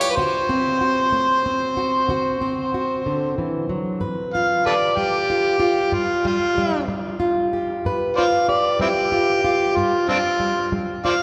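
Acoustic country blues with a gritty, soulful, straight 12/8 feel, where an overdriven, amplified harmonica carries the melody with light vibrato, tongue slaps and scooped notes in a jazz style, taking a solo from 4.0 seconds over a dark, woody fingerpicked steel-string acoustic guitar with old strings, both up front in a wet cathedral reverb.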